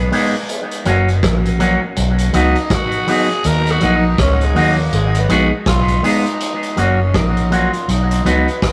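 A rough rehearsal-room sound with vinyl crackle and a stone-room reverb frames this sunny roots reggae fragment, cut from a longer piece and carried by a swung sixteenth-note feel. A raspy, growling tenor saxophone with light vibrato and dub echo takes a solo from the start until 6.4 seconds, over a round, foam-muted fingered bass that sits up front. A dark, clean guitar, picked through an envelope filter and echoed, fills in the chords of F#, B, D#m and G#m, while a vintage kit with a punchy kick and rolled-off top keeps time on hi-hat and rim click.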